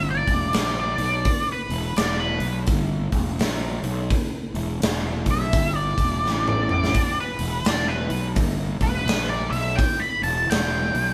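From the start, an octave-fuzz lead guitar solos over a growly, overdriven fingered bass on an E minor chord, joined at 0.3 seconds by a punchy big rock drum kit with a fill at 6.2 seconds, in a heavy, smoky blues rock power trio cut with southern rock at 84 BPM, a swung 4/4 feel, the dark, wah-soaked guitar up front alongside the band playing live in one room with moderate studio reverb.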